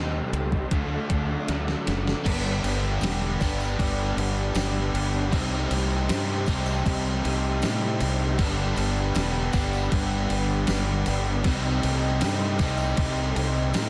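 A growly, punchy fingered electric bass sits up front with a gated, thumpy 80s drum machine that enters at 0.3 seconds and rolls through a fill into the main section of this dreamy, hazy shoegaze and dream pop rock cut at 78 BPM in G major, where two overdriven guitar riffs fill the background, one semi-hollow and hollow-toned with ensemble chorus and one warm with reverse reverb, while a bright, double-tracked crunchy guitar joins at 2.2 seconds, a jingly, distant tambourine at 2.6 seconds, and a very quiet, shimmering twelve-string acoustic arpeggio and a glassy, ethereal FM pad drift beneath chords moving between Gmaj7 and Cm6 in a dense, heavily limited mix.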